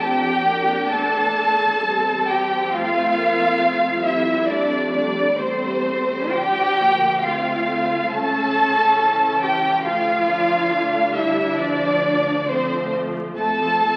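A rubato 4/4 pulse around 67 BPM carries this slow, lyrical and serene romantic movement for string orchestra in F major, heard as a section cut from a longer piece. A lush, somewhat distant violin section sings the melody with expressive vibrato while a second, focused violin line sits in the background, and the smooth-topped violas, close cellos with expressive portamento, and rich bowed double basses fill out the harmony as it moves through F, Dm7 and A7/C# before settling back on F. A generous scoring-stage reverb blooms around the ensemble, and the crackle of a very old 78 rpm record gives the whole recording an aged, nostalgic patina.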